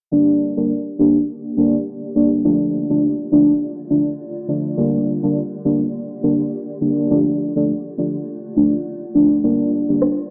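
Dancehall in G minor at 103 BPM, this short excerpt feels bouncy and tough, with a 16th-note swing of 56%. A deep, mellow chord stab carries the accompaniment from the start, its dark, detuned tone sitting up front with a fast attack, decaying notes, chorus and phaser, while a filter sweep runs across the whole passage. Behind it, a granular cloud pad holds sustained chords from 0.8 seconds, its blurred, evolving texture arriving with a slow attack and long release in its own built-in reverb. The harmony moves between Gm and Dm, and an electronic rim click with vintage 12-bit sampler grit lands only at the very end, at 10.0 seconds. The mix has the rough, low-passed character of a home demo heard over AM radio, set in a lush hall reverb.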